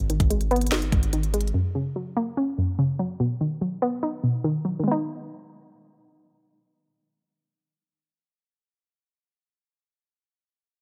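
A warbly, dusty, detuned pluck with chorus opens this eerie, dark half-time trap fragment alongside a heavy, punchy 808-style bass and an up-front electronic trap kit of knocking kick, sharp snare and crisp hats, but bass and drums stop at 1.5 s, leaving the mellow lo-fi pluck to carry the shadowy chord changes under a filter sweep until 4.9 s and on in a lightly reverberant space to 9.6 s.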